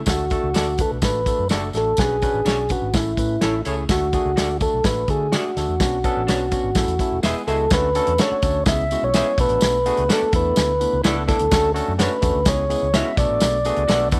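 A mellow tonewheel organ carries the melody up front, its round, dark, clean tone marked by key click and a stopped rotary speaker, in this urgent, passionate slice of uptempo 1960s-style soul cut from a longer piece. Beneath it, a barky tine electric piano plays lightly overdriven accompaniment through a combo amp, and a vintage fingered electric bass sounds dark, foam-muted and amped with tube saturation. The soul drum kit sits up front with a tight kick, a medium-tuned snare and hi-hat, its rolled-off top heard in a roomy yet distant space, while a jingly tambourine stays close, dry and in the background. From 0.5 seconds an electric guitar through a small old amp adds twangy, slightly broken-up picked stabs from the background. At 126 BPM in a straight 4/4, the opening section circles D, Bmadd9 and A before the electric piano plays a fill at 7.0 seconds, leading at 7.7 seconds into a second section built on Dmaj7, C#m7, Bm7 and E7sus4, all set in light studio reverb.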